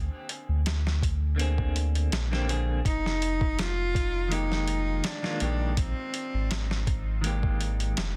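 A round, deep sub bass opens this smoky, brooding trip hop excerpt in F dorian, joined at 0.3 seconds by a compressed, pitched-down boom bap drum kit with a thumpy kick, medium-tuned snare and hi-hat, swung lightly at a slow 82 BPM. At 1.4 seconds a clean, picked semi-hollow electric guitar enters as accompaniment, sitting lower in the balance and colored by tremolo and tape echo. A bowed cello carries the melody from 2.9 to 6.9 seconds, played sul tasto with light vibrato and an airy bow, its intimate tone roughened by vintage 12-bit sampler grit and trailed by dub echo. The harmony moves from Bb9 to Fm11 at 2.8 seconds. Bass, drums and cello sit up front in a dry, dense, heavily limited modern mix, and the piece is cut from a longer work.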